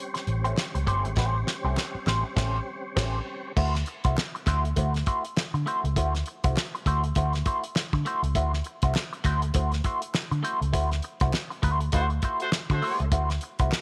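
A tonewheel organ opens this gritty, energetic funk excerpt in D mixolydian at 100 BPM with a swung sixteenth feel, holding smooth chords through a slow rotary speaker and chorus vibrato over an A7#9 before dropping out at 3.5 seconds, as a twangy, compressed wah guitar, a dry 70s drum kit with a fat snare and tight kick, and a dark, foam-muted picked bass push up front. A drum fill and band accents carry the shift to a D9 groove at 3.6 seconds, with crisp group handclaps sitting distant in a large room behind the band. Near the close, a clear horn section with light vibrato adds a brief second line from 11.9 seconds, all within a light reverb.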